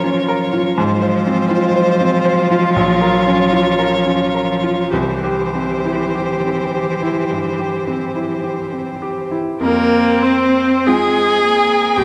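Yearning and melancholic, this slow, rubato classical movement for piano quartet in F minor drifts at 45-62 BPM, with a distant, vibrato-rich violin singing the melody over a smooth, clear cello second line, a focused, up-front viola and a clear baby grand piano with short sustain, all bathed in a wet concert-hall reverb as the harmony settles onto F minor at 9.6 seconds.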